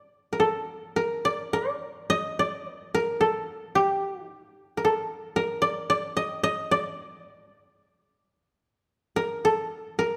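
Austere and calm, this short excerpt of Japanese traditional chamber music features a solo koto, cut from a longer piece and lasting about 10.2 seconds. The tempo sits around 55 BPM in 2/4, though the beats fall unevenly with a rubato feel that lets the phrases breathe. Set in D miyako bushi, the koto keeps to a compact range from G4 to Eb5. Plucked with fingerpicks, its tone is mellow and woody, heard up front and dry at the source. A moderate concert hall reverb of 1.9 seconds surrounds it, lending the spare lines a sense of space.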